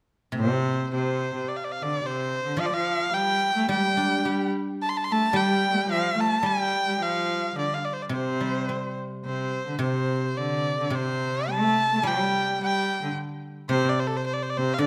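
A bowed cello and a fingerpicked guzheng open this graceful, festive piece of Chinese traditional chamber music at 0.3 s, and a solo erhu takes up the melody at 0.4 s. The music is in 4/4 at 108 BPM, played with a rubato feel in the C zhi mode and tuned slightly low to A4 = 437 Hz. Up front, the erhu sings high and focused, with vibrato and portamento shaping its clear line. Beneath it, the cello carries a second line in a low register, its gut-string tone rich and a little reedy, played in period style with light vibrato. The guzheng fills in the accompaniment with ringing, silvery strings. All three parts play through to 14.9 s in a moderate scoring-stage reverb, and the recording is a section cut from a longer piece.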